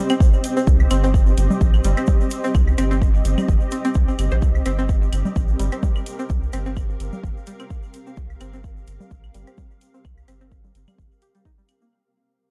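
A punchy electronic kick drives this minimal techno excerpt at 128 BPM in 4/4, with a 55% swing on the 16ths giving the groove a loose, quirky shuffle, while metallic hi-hats, tape-warm claves and congas, and a grainy egg shaker tucked in the background fill out the sparse percussion. Underneath, a round, deep analog bass enters at 0.7 seconds and sits up front, its filter sweeping as sidechain pumping makes it breathe. The riff comes from a bright, twangy string-like resonator pluck in C minor, colored by chorus, phaser and tape echo, with its own filter sweep and the same pumping motion. A cloudy granular pad drifts behind it all, blurred and mellow with built-in reverb, while the harmony rests on a single Cm7 chord throughout. The dark production and digital ambience keep the mood spare and slightly off-kilter, and the whole passage fades out across its 11.9 seconds.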